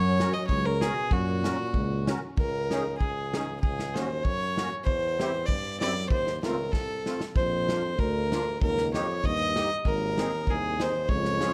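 A bowed fiddle, played by one player and set up front, carries the melody with a rich, nasal, earthy tone that has a slightly boxy edge. This bouncy, jolly alpine folk dance band piece moves in a straight two-beat metre. Beneath it, a solo euphonium plays a dark, classically styled second line, while a musette-tuned accordion fills in the accompaniment with a reedy, shimmering and smooth sound. A mellow tuba with light vibrato, distant and roomy in classical style, holds the bass, drops out at 2.2 seconds and returns at 7.4 seconds. A natural acoustic drum kit of hi-hat, tight kick and medium-tuned snare keeps the dance going and plays a fill at 6.7 seconds, all within a moderate recital-hall reverb and a warm production in this cut from a longer piece.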